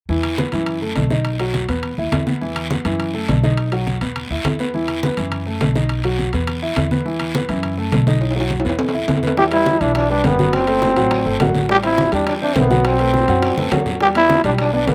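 Fiery, passionate salsa at 207 BPM, cut from a longer piece, where a warm, up-front grand piano with slapback echo and a woody, thumpy pizzicato upright bass drive the groove alongside bright, compressed congas, ringing metal-shell timbales and a raspy guiro, until a drum fill leads at 9.4 s into E minor, where a gritty, growling solo trombone with vibrato and scooped notes takes the melody up front and round, distant bongos join, all in a dry, open-air sound.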